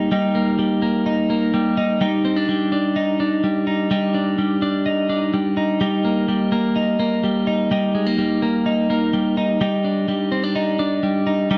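A straight 4/4 pulse at 126 BPM carries this youthful, breezy indie pop fragment in Eb major, where a bright, twangy, clean twelve-string electric guitar plays solo and up front from 0.0 to 11.6 seconds, its compressed, picked chords moving between Eb and a rootless Cmadd9 within a dark production touched by light reverb.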